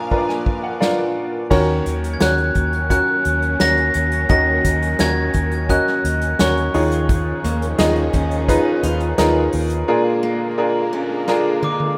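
A bright upright piano with audible action noise opens this driving, bittersweet piano-driven pop excerpt with a fill, joined by a ringing glockenspiel melody through digital delay, background bowed strings with vibrato, an unplugged drum kit played with bundle sticks, a dark foam-muted electric bass entering at 1.5 seconds, and a picked steel-string acoustic guitar riff arriving at 7.4 seconds, all set in a lush hall reverb within a rough home demo mix that closes on a drum fill.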